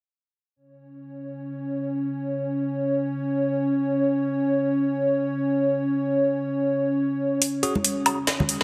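A huge ambient reverb and a dense, heavily limited modern master frame this brooding deep dubstep fragment in free time, where a dark, detuned analog pad with chorus holds sustained chords from 1.2 s before an overdriven garage drum kit with woody snare, metallic hats and woodblock arrives at 7.4 s, followed by a brief barky electric piano stab through dub echo at 7.6 s and ringing, close congas at 7.8 s.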